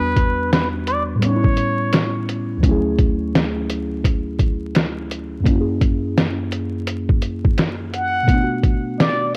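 Nostalgic and dreamy, this swung lo-fi hip hop fragment opens with a breathy, jazz-style trumpet with plunger mute, its wah-wah tone, light vibrato and scooped notes drifting through analog delay before it falls silent at 2.2 seconds and returns at 7.9 seconds. Underneath, muted felt-like synth keys lay down dark, warbling, chorus-tinged chords moving from Em7 through A7, Dmaj9#11 and F#7 to Bm7. A pitched-down, sampler-style drum kit with a thumpy kick, 12-bit grit and tape saturation sits up front from 0.2 seconds, all wrapped in light reverb and vinyl crackle like a home cassette recording.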